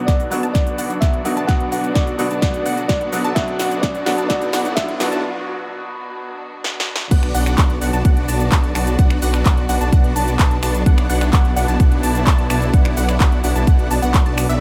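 Festival progressive house at 128 BPM in B minor, powerful and emotional, this cut from a longer piece opens on a build-up where a bell-like, sparkling FM electric piano melody and a brilliant concert grand with pumping accompaniment ride over clear, very quiet sustained strings, a background pluck arpeggio, a filter-swept supersaw riff and a very quiet riser from 2.6 s, with drum fills and a break before the drop at 7.1 s. From there the huge, airy supersaw riff, lush detuned saw bass with chorus, punchy up-front kick and a big-room kit of crisp hats, punchy snare, claps, snaps, shaker and crash drive on, the piano falling away at 7.1 s while strings and pluck continue. Light reverb frames the mix.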